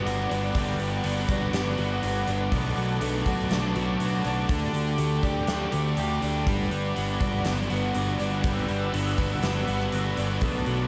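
Dreamy and hazy, this excerpt of shoegaze-tinged dream pop rock moves at 122 BPM in a straight 4/4 in G major, cycling through Gmaj7, Bm7 and Dsus4 in a mix soaked in plate reverb. A smooth, detuned sawtooth pad holds sustained chords with chorus and tremolo, while a woody, boxy twelve-string acoustic guitar shimmers with fingerpicked, octave-doubled arpeggios in the background. A biting overdriven guitar riff trails reverse reverb over a dark, thick fuzz guitar, a gritty picked electric bass enters at 0.1 seconds, and a gated 80s kit adds a punchy kick, medium-tuned snare and hi-hat in an airy, polished big-room sound.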